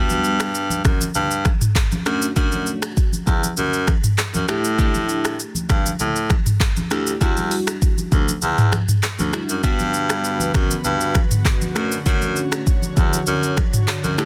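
Glassy, detuned digital keys with chorus and a roomy baritone saxophone carrying the bass line open this joyful, romantic afrobeats excerpt at 99 BPM in D major, joined at once by an up-front electronic afro-pop kit of deep kick, finger snaps, handclaps, hi-hat, rim clicks, shaker and toms with soft clipping on the snare, plus ringing congas in the background, and after the kick drops out from 8.4 to 9.6 seconds an airy, breathy pad with a slow attack enters at 9.9 seconds over the Gmaj7 and Dmaj7/F# chords, in a dry, dense, heavily limited master.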